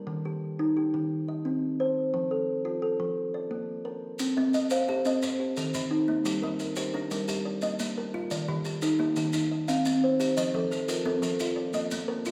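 A steady 12/8 pulse drives this hypnotic, trance-like southern African traditional piece, built on an mbira-style interlocking cycle and cut from a longer work. A single kalimba opens alone with arpeggios that sound woody and ringing, its fingertip-plucked tone mellow, soft and somewhat vintage, sitting up front in the mix. At 4.2 seconds grainy maracas join from a distance, and at 4.4 seconds a second kalimba adds its own arpeggios, thumbnail-plucked and brighter, with short, airy notes reaching a little higher. The harmony circles through chords such as Eb, Cm, F and Bb, with Gm appearing once along the way. A recital-hall reverb wraps the ensemble, heard from further back in the room, lending the cycle a spacious, immersive quality.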